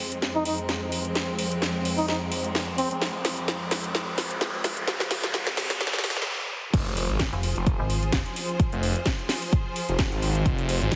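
Heavily compressed and radio-like, this cut from a longer bass house track sits in a lush hall reverb and moves at 129 BPM in F minor with a swung, aggressive swagger. A clear symphonic string section holds bowed chords with vibrato and a smooth top throughout, pumping against a sidechain. Early on, a dark, veiled trumpet with a bucket mute plays a short, distant classical-style melody with light vibrato and delay. Meanwhile, a house drum kit with a cracking snare and metallic, filtered hats builds a fill alongside a background riser and a filter sweep before the build halts briefly at 6.3 seconds. The drop lands at 6.7 seconds with an impact, a punchy, tape-warm electronic kick up front, and a swirling, thick detuned saw bass run through a phaser and tube saturation. A decaying, digital FM bass adds a short metallic stab at 7.3 seconds.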